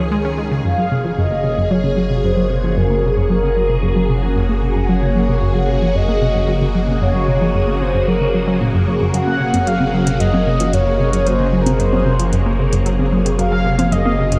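A straight 4/4 pulse at 113 BPM drives this expansive, luminous stretch of ambient, sequencer-driven space music in Gb lydian, cut from a longer piece. An analog pluck carries the riff from the start, its detuned sawtooth tone bright and round with a fast attack that decays into chorus, tape echo and shimmer reverb, while a deep sine sub bass holds the low end beneath it. A phased string machine sits up front with swirling, vintage sustained chords that open slowly and release long, colored by ensemble chorus and phaser. Above them, a mellow horn-like synth lead sings the melody with a soft attack, vibrato and a filter sweep, dressed in lush chorus and tape echo. The harmony moves from Dbadd9 to Gbadd9, and at 9.1 s electronic hi-hat and congas join with metallic hats and their own tape echo. A huge ambient reverb with a 7.1 s tail and a dark production give the whole a vast, glowing sense of space.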